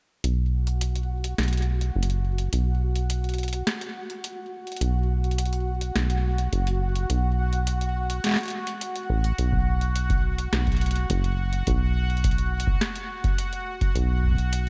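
Set in a light digital ambience, this intricate, melancholic IDM excerpt rides a rubbery, saturated acid bass whose resonant filter sweeps throughout, under a booming analog drum machine with a tonal snare and metallic hats touched by slapback echo, while a bright, bubbling sawtooth texture drifts through random filter steps with chorus over B5 and F#sus4 chords, and a dry, deep electronic kick joins at 9.5 seconds.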